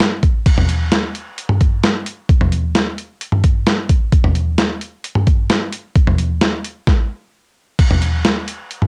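Pop with a nocturnal, melancholic mood, carried by a boom bap sampler-style drum kit playing a straight 4/4 groove of kick, snare, hi-hat, toms and crash cymbal. The kit sits up front, compressed and gritty, with a thumpy kick and a medium-tuned snare, all colored by cassette tape and a moderate studio reverb that gives it a home-recorded feel. The drums drop out for a brief stop from 6.9 to 7.8 seconds before a new section begins, and the piece is cut from a longer recording.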